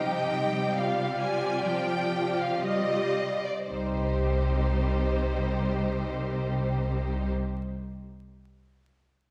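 Classical slow romantic movement for string orchestra, melancholic and yearning, in a rubato triple metre that slows through its opening 3.7 seconds of a short fragment from a longer piece. Up-front violins carry a soft-attacked, expressive melody with a smooth top, while a more distant second violin line adds portamento, the violas give an intense accompaniment and the close cellos hold an even bass, joined at 3.7 s by a rich double bass section. The strings share a lush, vibrato-laden sound, set in a wet scoring-stage reverb heard from further back in the room, with vinyl crackle.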